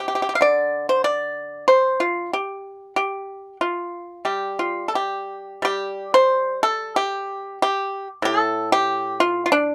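Chinese traditional solo plucked-string music, elegant and flowing at around 92 BPM in 4/4 with an uneven, rubato feel in G shang mode, this brief fragment from a longer piece features a lone pipa, bright, dry and percussive under fingerpicks, placed up front in a dark production with a modest booth ambience, spanning A2 to F5 and moving into a new section at 5.6 seconds before breaking off at 9.7 seconds.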